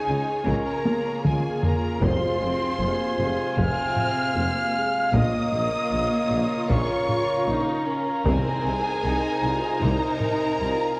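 Distant, roomy French horns hold sustained chords at the heart of this dark, dramatic orchestral film-score excerpt in F minor at 77 BPM, where a lush, focused symphonic violin section carries the high melody over a pure flute group and a soft-attack studio violin section playing a second line, smooth violas, a clear string section and mellow trombones filling out the harmony, trumpet stabs, a bass of bowed cellos, double basses and a very quiet tuba, vintage band-limited taiko drums with a fill at 0.9 seconds, and very quiet, dry timpani at 2.0 and 8.3 seconds, set in scoring-stage reverb with a worn, warbling cassette-tape pitch drift.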